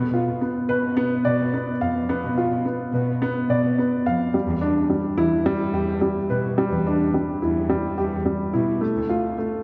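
Moving and hypnotic, this short piece of piano and strings electronica moves in a straight 4/4 and is cut from a longer work. A dark upright piano carries the riff up front, its mellow, woody tone and short sustain marked by audible action noise and trailed by tape echo. Beneath it, a dark studio cello section holds the bass line, bowed sul tasto with a soft attack, light vibrato and a smooth top, sounding intimate and close. The harmony passes from Bdim to Em7 at 4.3 seconds and settles on Dm at 8.8 seconds, with the cellos stopping at 9.3 seconds just before the piano. A wet recital hall reverb surrounds the parts, and the sound stays dusky, with nothing above 7.9 kHz.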